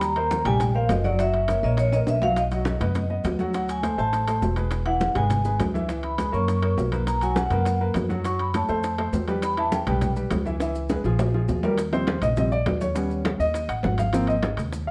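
Driven by a brisk, straight 4/4 groove, this sunny, sophisticated Afro-Cuban jazz excerpt opens with a hand-percussion bed of ringing congas in the background, very quiet low-tuned bongos, close metal-shell timbales and grainy maracas. A woody, thumpy upright bass with gut strings sits up front in a dark low register, while a clear baby grand piano with short sustain supplies the accompaniment. The vibraphone, struck with medium hard mallets and shimmering with fast motor vibrato, carries a metallic solo melody until 10.1 s, with drum fills marking the turns. At 11.8 s the harmony moves to E-flat major and the piano takes over as soloist, moving through rich extended and altered chords. Moderate studio reverb adds space, and the whole cut carries the worn, warbling pitch drift of an old cassette tape.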